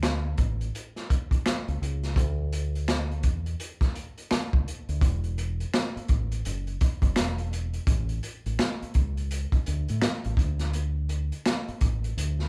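Swung sixteenths at 84 BPM in 4/4 carry this introspective, sultry R&B and neo-soul excerpt, where a gritty, saturated breakbeat kit of tight kick, mid-tuned snare, hi-hat and finger snaps with a rolled-off top sits up front beside a dark, round, punchy fingered electric bass that reaches down to E1, both playing throughout in a lightly reverberant live-room sound that moves into a new section at 5.0 s.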